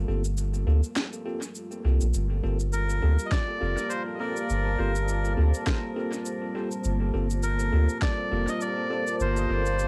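A moody, evolving pad on a Gm11 chord and a round, soft sub bass open this spacious, meditative ambient dub piece in G minor at 102 BPM, with a light 16th-note swing and cassette-tape coloring on the pad. Bell-like tine electric piano stabs and a woody electronic shaker and snare soon join, both carrying dub echo. A reedy, breathy melodica takes the melody from 2.7 seconds, and an up-front electronic kick drum plays from 3.3 to 8.2 seconds in this short cut from a longer home recording.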